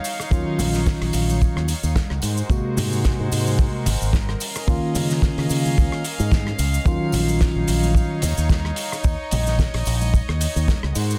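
A punchy, envelope-filtered fingered electric bass sits up front with tube saturation, entering at 0.3 s alongside a tight, dry kick in this sensual, cosmic nu-disco passage at 110 BPM with a light 16th-note swing in Eb dorian. A damped 70s drum kit with a fat snare, hi-hat, rim click and cabasa plays from the very start together with very quiet, soft-handed tambourine and congas, while a mellow tine electric piano carries dub-echoed chords until 8.2 s over a progression moving from Ebm9 through Ab9 and Db69. Behind it all, a reedy, gut-string chamber violin section sustains bowed chords with light vibrato and sidechain pumping, set in a small room and a dense, heavily limited modern master, cut from a longer piece.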